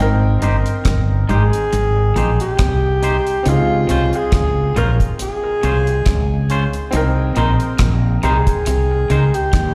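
A clear grand piano with audible action noise opens this tender, romantic lovers rock reggae fragment at 69 BPM in Ab major, joined at once by a dark, round fretless bass up front and a low twangy guitar riff carrying a warbly pitch drift, tape echo and slapback. At 0.4 s a dry, tight-kicked reggae kit enters with hi-hat and rim click, alongside clean fingered guitar stabs tucked in the background with slapback. At 1.3 s a breathy, subtoned alto saxophone takes a jazz-style solo melody over a swung Abmaj7, Dbmaj7 and Cm7 progression, all heard as a live gig through the venue's PA with recital hall reverb.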